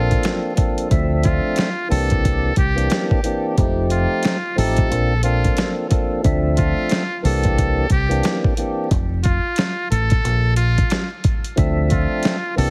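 A swung, head-nodding boom-bap groove opens this moody, reflective hip-hop excerpt, with a gritty sampler-style kit of thumpy kick, snare and hi-hat sitting up front over a dark, round, punchy fingered electric bass, while a finger snap sits close and dry in the background. A fat tonewheel organ turning through a slow rotary speaker carries the jazzy chords, and a buzzy, thin trumpet with a metal mute plays a jazz-style solo line with light vibrato, scooped notes and a touch of delay. The whole track has a heavily compressed, radio-like sound dusted with vinyl crackle and almost dry.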